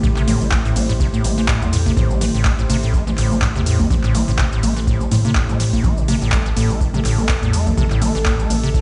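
A 124 BPM pulse in 4/4, swung at 55% on the sixteenths, drives this gritty, raw acid house cut from a longer piece, holding on a single Am7 chord in A minor for its full 8.8 seconds. The electronic kick drum is deep and overdriven, and the drum machine sits dry and up front with congas, handclaps, hi-hat, shaker and toms, also pushed into overdrive. A squelchy, hollow square-wave acid bass plays a resonant, plucked riff with a fast attack and decaying notes, carrying tube saturation, analog chorus, digital delay and sidechain pumping. Beneath it, a round, mellow analog bass holds the low end with sustained square and sine tones, saturated and pumping as well. A smooth sawtooth-and-triangle pad with a sub octave lays slow-attack chords far back in the mix, chorused and pumping. The whole track sounds as if played on a big sound system in a bare stone room, with a short small-room reverb and a dull top that stops at 10.5 kHz.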